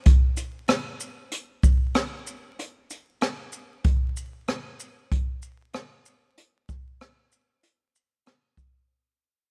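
Dry and dusted with vinyl crackle, this relaxed hip hop excerpt at 95 BPM in 4/4 with a swung 16th feel features only an up-front jazz brush drum kit, recorded acoustically in a small room, with a boomy kick, hi-hat, rim click and shaker playing from 0.1 to 8.7 seconds under a fade-out that spans the whole clip.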